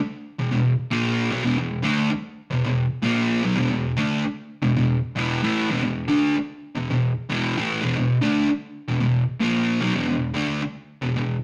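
A double-tracked, picked fuzz guitar opens on an E5 chord and plays alone from 0.4 s to 11.4 s, its compressed, distorted tone sitting up front in a rowdy, swaggering rock fragment cut from a longer piece, with a straight 4/4 feel and a rough rehearsal-room sound ringing in a wet stone-room reverb.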